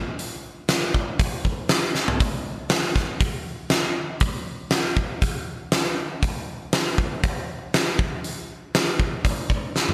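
Energetic and powerful, this rock excerpt at 119 BPM in a straight 4/4 features a huge, up-front arena drum kit of hi-hat, punchy kick, fat snare and toms, entering at 0.2 seconds with gated reverb and breaking into fills at 2.0 and 9.8 seconds, all set in a lush hall and a bright 1980s-style digital production marked by lossy compression artefacts.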